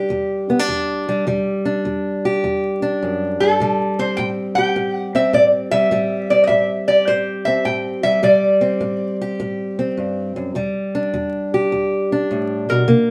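A boxy, woody parlour steel-string guitar with old strings opens this brooding, soulful acoustic country blues excerpt, fingerpicking a swung E minor accompaniment at 103 BPM over Em7 and Am7, before a nasal, metallic lap resonator guitar played with fingerpicks and slide carries the melody up front from 3.4 seconds and returns briefly at 12.7 seconds, all captured live in one room with a wet studio reverb and vinyl crackle.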